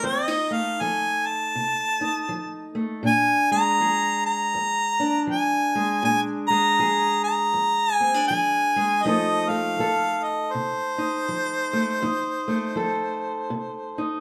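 Recorded live in one room with a moderate large-studio reverb, this gritty, rollicking acoustic country blues excerpt swings at 80 BPM in F mixolydian. A clear, jazz-styled harmonica carries the melody with light vibrato, tongue slaps, soft attacks and scooped notes, over a dark, boxy fingerpicked parlour steel-string guitar, both up front, moving from F7 to Bb7 and back to F7.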